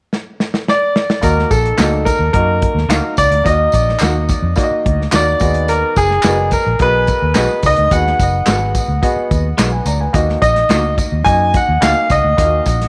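A straight, uptempo 1960s-style soul groove opens with a drum fill on a dry, dark kit with a tight kick, and the clear, intimate baby grand melody arrives at 0.7 seconds, up front with audible action noise and a tape echo. From 1.2 seconds a woody upright piano, a round, punchy foam-muted electric bass and a band-limited tambourine with group handclaps fill out the passionate, urgent feel over Ebm and B6 chords. A very quiet, slightly broken-up electric guitar adds picked stabs through a small old amp, all set in light reverb and small room ambience in this excerpt from a longer piece.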